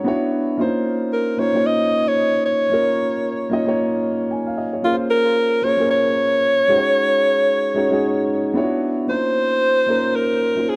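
A swung sixteenth-note feel in 4/4 gives this relaxed amapiano piece its easy, rolling lilt. A dark, mellow baby grand piano opens the track as accompaniment, its boxy tone and long sustain sitting up front. At 1.1 seconds a warm alto saxophone enters as the solo melody voice, pop in style, with vibrato, a smooth top end and a digital delay trailing its phrases. The harmony drifts through rich extended chords such as Dbmaj13, Bbm9 and Ab7sus4 during the opening drop, then settles onto Bbmadd9 when a new section begins at 9.1 seconds. A lush hall reverb wraps the dark, warm production, and the passage is cut from a longer piece.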